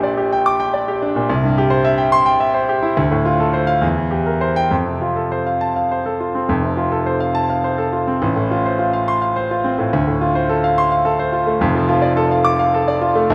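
Stormy and agitated, this fragment of a virtuoso classical piano study unfolds in 6/8 with free, rubato timing, its opening passage returning at 6.5 s. A solo concert grand carries everything across a range from F1 to D6, sounding polished and up front, with a deep bass and short sustain, set in the moderate reverb of a scoring stage. The harmony moves through chords such as Gm/Bb, Dm7 and C7/E before settling on F and later Dm/F.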